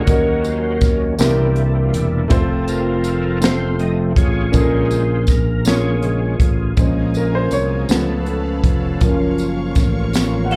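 Solemn and fervent, this slow gospel passage in 6/8 at 54 BPM moves from Bb minor to Bb harmonic minor at 6.8 s, as a gritty, overdriven tonewheel organ through a slow rotary speaker takes the lead over warm grand piano, a growly, bright fingered bass, a crisp, up-front fusion drum kit with a high-tuned snare and a jingly tambourine in the background, before the piano steps forward at 6.8 s alongside lush, bowed symphonic strings and a twangy, clean electric guitar slips in at 10.5 s, all heard live through a club's PA with light reverb.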